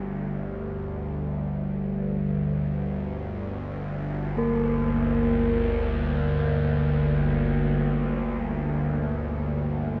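A tense, string-like drone in the low register and a ringing quartz singing bowl sound together from the opening, settling this cavernous dark ambient piece into G minor in free time. The up-front drone is built from detuned sawtooth unison with a noise layer, a slow attack and long release, and carries vibrato, a phaser and its own reverb; above it, the bowl's pure, meditative tone, sounded with a wooden striker, shimmers with slow beating. A huge, wet reverb and a cassette-tape grain surround this 10-second section cut from a longer piece.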